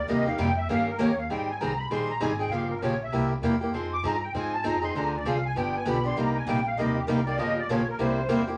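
A reedy, shimmering musette accordion solos over a woody, thumpy pizzicato upright bass from the very start of this fiery, bittersweet jazz manouche fragment in swung 4/4, joined at once by a bright, up-front parlour steel-string guitar and a second picked swing guitar sitting in the background that plays only briefly at the opening and again from 6.2 s, with wet studio reverb and vinyl crackle over the mix.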